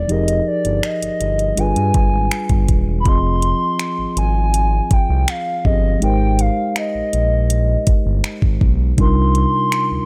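A dry, close-sounding mix with little reverb frames this short, late-night contemporary R&B excerpt, moving at 81 BPM in straight 4/4 with a sensual mood. Up front, a hollow, woody synth lead with a soft attack carries the melody between D5 and C6, its square-and-triangle tone touched by a noise layer, vibrato, chorus and delay. Beneath it, a mellow tine electric piano supplies clean accompaniment from C3 to Eb5, sounding as if heard through its built-in speakers. A dark, gliding synth bass blends sawtooth and triangle waves with a moving notch, fast attack, vibrato and portamento, sitting prominently between Eb1 and G2. The electronic drum kit pairs a knocking kick with metallic hi-hats and finger snaps. The harmony moves from Fm11 to G7b9, then settles into a second passage at 3.1 seconds that travels through Fm7 and Abmaj9 before landing on Cm11 at 9.0 seconds.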